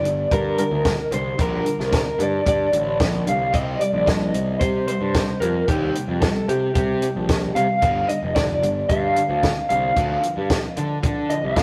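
An electric guitar through a small old amp carries the melody with a dark, slightly broken-up, lo-fi tone and a tremolo shimmer, while a growly fuzz bass sits up front and a biting, double-tracked overdriven guitar picks out a bright riff beneath it. This restless, cool indie rock excerpt moves through Gm, C7(no3), G5 and Dm, with a compact cocktail drum kit entering at 0.1 seconds, its punchy kick and high-tuned snare dry and close. The rough rehearsal-room recording is bathed in a wet stone room reverb.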